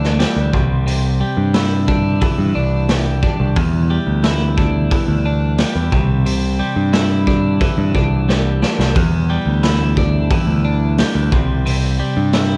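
Brooding and angsty, this short excerpt of quiet-loud alternative rock moves at 89 BPM in a straight 4/4, cycling between Em7 and Cadd9 before landing on C. A bright, clean twelve-string electric guitar plays compressed arpeggios with a subtle chorus and cassette-tape colour, over a growling picked bass that is overdriven and up front. A raw garage drum kit in a small, pumping room brings a punchy kick, a medium-tuned snare and hi-hat, all gritty and saturated, with a fill at 8.3 seconds, all caught dry on a home cassette recording.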